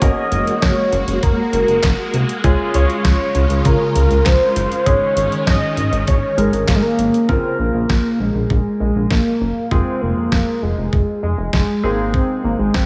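Bright and wistful, this synth-pop excerpt moves at 99 BPM in a straight 4/4, with a velvety, chorused synth lead carrying the melody over a clear baby grand piano, a glossy chorused synth bass and a thumpy, tape-warm 8-bit drum machine of kick, snare, hi-hat and handclaps, while a vintage string machine of violas holds phased, ensemble-chorused chords until 7.3 seconds, all set in a dreamy mix soaked in hall reverb as the chords move from Gbadd9 through Db and Absus4 to Bbm7, Fm and Ab.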